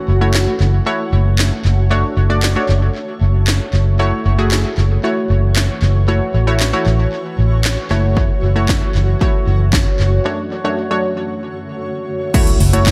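An echo-heavy mix with light reverb frames this bittersweet yet confident dance-pop excerpt at 115 BPM in F# minor, moving between F#m7 and Dmaj7/F# chords. A detuned sawtooth analog pluck with a filter sweep and tape echo, and an ethereal, granular ambient pad with octave-up shimmer, both pump against the kick alongside a dark, round, foam-muted electric bass that sits up front. The overdriven house drum kit hits with a punchy kick, cracking snare and metallic hats from 0.3 seconds, a break arrives at 10.3 seconds, and a very quiet electronic impact lands at 12.4 seconds.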